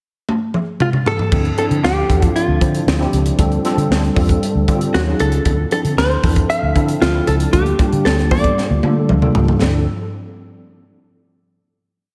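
A crisp fusion drum kit opens this slick, urban piece of polished 1980s jazz-funk pop with a fill at 0.3 s, its high-tuned snare and punchy kick settling into a crisp sixteenth-note studio groove. A clean, compressed hollow-body jazz guitar enters at 0.8 s with picked, motif-based call phrases colored by slapback and tape echo. At 1.3 s a worn, slightly out-of-tune tine electric piano adds lightly overdriven, chorused rootless chords in syncopation, while a dark, round, foam-muted fingered bass weaves an agile syncopated line with chromatic approach notes, all set in a lush hall that gives a big arena sound before the closing chord.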